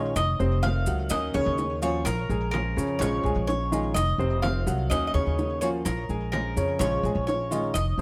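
Latin son and guajira with a nostalgic glow, this excerpt puts a picked, metallic Cuban tres melody with tape echo up front beside a woody, growly pizzicato upright bass, while a baby grand piano adds present, short-sustained arpeggios, a fingerpicked flamenco guitar with audible finger squeak supplies accompaniment, round, low-tuned bongos sit in the background alongside grainy, mellow maracas, and it all moves over a repeating F7, Ebm7, Bbm7 progression captured by close, detailed microphones with light reverb.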